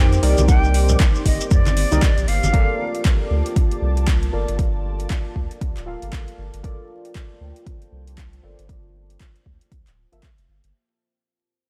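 Moody, swung deep house cut from a longer piece, where a breathy, gritty jazz flute with tape echo sings only for the first 3.0 seconds over a dark, detuned ambient pad and a soft, phased airy pad, glossy chorused polysynth stabs with a filter sweep, a round sine sub bass and an overdriven, up-front kick, while an overdriven drum kit adds metallic hi-hats and handclaps, shekere and low-tuned congas drop out at 2.5 seconds, sidechain pumping moves through the bass, pads and stabs, and vinyl crackle sits over a fade-out as the chords shift from Cm9 to Gm9.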